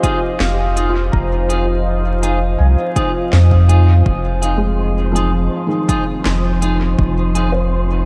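A straight 4/4 groove from a punchy, overdriven electronic kick and a tape-warm kit of woody snare and crisp hats, both kit and clean picked guitar stabs soaked in dub echo, anchors this spacious, hazy ambient dub fragment over a single Fm7 chord. A round, up-front sub bass enters at 0.4 seconds beneath a deep, moody detuned pad with chorus, while a felt-muted upright piano plays soft arpeggios in the background through diffuse delay, its action noise audible. At 4.6 seconds an airy, breathy wind-like noise texture drifts in, and the whole dreamy mix sits in moderate cathedral reverb with vinyl crackle and lossy artefacts.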